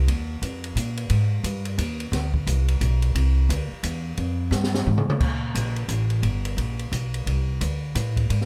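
A relaxed, swinging jazz waltz in three carries this passage cut from a longer piece, anchored by an up-front upright bass that is plucked, woody and warm on steel strings, moving between G1 and Bb2. The acoustic drum kit sits distant in a small, roomy space, with dark cymbals, a high-tuned snare and a boomy kick across crash, hi-hat, ride and toms. A drum fill from 4.5 to 5.2 seconds leads into a new section, and the overall sound is dry.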